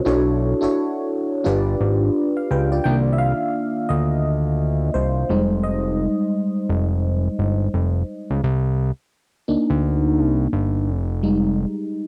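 A glassy FM electric piano sits up front in this sultry, smooth neo-soul and R&B excerpt, its bell-like attack decaying over a full-bodied tone with a noise layer, and colored by chorus, phaser and the grain of cassette tape. At 86 BPM in 4/4 and C minor, the groove leans into a 61% swing on the sixteenths. Underneath, a fat analog bass blends sawtooth and square waves into a thick, detuned, saturated sound with a quick filter pluck and sustained notes, also placed up front in the mix. After a brief opening over Bm9 and G7, the electric piano takes a solo from 2.8 seconds, moving between Cm9 and Fm9 until the clip ends at 12.1 seconds. A moderate studio reverb surrounds both parts, and the whole was captured as a home recording on cassette.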